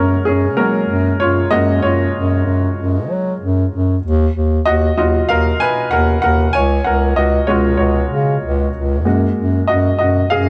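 Piano-driven pop with an uplifting, warm mood, this short cut from a longer piece sets a clear, natural baby grand piano with short sustain up front, accompanying over F#add9, D#madd9 and C#sus4 chords, beside a soft-attacked bass clarinet in a classical style carrying the bass line, all within a dark production touched by light reverb.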